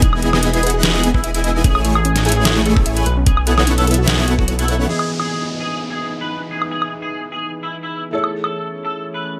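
Playful and bright, this future bass cut from a longer piece runs at 148 BPM in E major with a half-time feel, opening on a drop where a huge, dense compressed supersaw riff and a thick, detuned saw bass pump against a knocking electronic kick and a dubstep kit with a deep snare, metallic hats and woodblock. A clean, twangy electric guitar carries the melody throughout, treated with ensemble chorus, digital delay and sidechain pumping, while a soft, round pluck sits in the background with chorused, delayed arpeggios over chords moving from Emaj7 through Amaj7 to B9sus4. The kick falls away at 4.5 seconds, and at 4.9 seconds the supersaw and bass follow, as a felt-muted upright piano takes up the accompaniment with audible action noise and a vintage intimacy while a downlifter falls beneath it. An airy, breathy pad with slow attack and long release joins at 5.6 seconds, and a filter sweep on an analog synth pad shapes this second section as the harmony returns to Emaj7 and then Amaj7. 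The mix is dry with little reverb, the drums and low end sitting up front while the softer keys and pad float behind the guitar.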